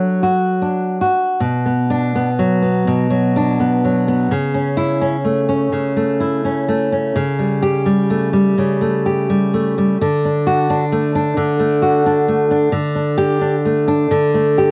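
Rubato in 4/4 between 74 and 91 BPM, this sunny, nostalgic romantic excerpt for solo classical guitar in D major features a bright, fingerpicked nylon-string guitar with fresh strings, sitting up front from 0.0 to 14.7 seconds with a cassette-tape character, moving through D, Bm, A/C#, A7/C# and back to D before resting on Dsus4, all in a small room with light reverb on a home cassette recording.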